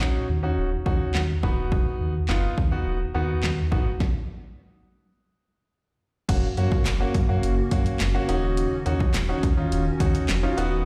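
A clear, polished concert grand piano opens this upbeat, carefree dance-pop excerpt alongside a deep sine sub bass with octave and a punchy, tape-warm analog drum machine of kick, snare, hi-hat, handclaps and crash; the piano and bass both carry sidechain pumping, the piano adds an early fill, and the music stops from 4.0 to 6.3 seconds. At 6.3 seconds a glassy, ethereal FM pad with ensemble chorus, its own reverb and sidechain pumping enters in the background as the chords move from F# to D#m7, and a very quiet, hollow group handclap joins at 6.9 seconds. The mix sounds as if played over a big sound system in a bare stone room.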